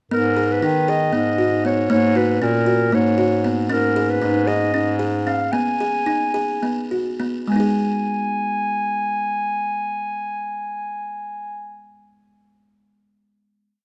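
The recording has a dark, warm production with light reverb, and all three players sit up front. This short, complete piece of contemporary chamber music in 7/8 is in G# minor and tuned to A4 = 437 Hz. Its mood is urgent yet pensive, and it moves at 206-235 eighth-note beats per minute. A buzzing, woody kalimba with a thumbnail pluck plays a bright, mid-forward ostinato of short arpeggios throughout. The mellow, smooth-topped clarinet carries a classical-style melody built from call-like motifs, while a clear, vintage-toned bass clarinet holds root-and-fifth bass on the main beats until 5.5 seconds. The harmony moves from G#m through G#9sus4 and C#sus2/G# back to G#m, slowing between 3.7 and 7.5 seconds before settling into a final chord that holds to the close.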